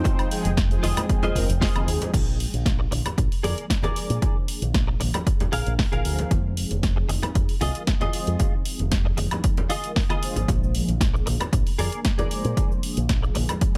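Set in a digital ambience, this sensual, sleek nu-disco excerpt moves at 115 BPM over Fm7 and Bb7 chords, with a punchy, tape-warm electronic kick up front and a house kit of punchy snare, warm hats, crash and woodblock, while ringing congas and cabasa sit in the background. A mellow, round synth brass with chorus, phaser, delay and sidechain pumping carries the accompaniment, a bright, clean direct guitar picks a compressed riff through ensemble chorus and delay, and a warm fingered electric bass plays through its envelope filter from 0.5 seconds. A thick, warbling unison pad holds a G5 only through the opening drop until 2.1 seconds, when a filter sweep on an analog polysynth takes over for the rest.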